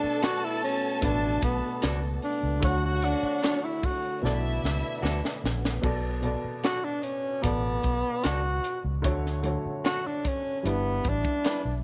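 Lush 1970s-style soul in B minor at 75 BPM, bittersweet and smooth, with a breathy, whispered tenor saxophone soloing up front over round, foam-muted electric bass, a tight funk drum kit with a high-tuned snare and a fill from 4.2 to 5.8 seconds, mellow baby grand piano, a slightly broken-up electric guitar riff and lightly overdriven tonewheel organ in the background, while a dark violin section with portamento plays a second line until 5.4 seconds, all in a small room with light reverb and lossy artefacts.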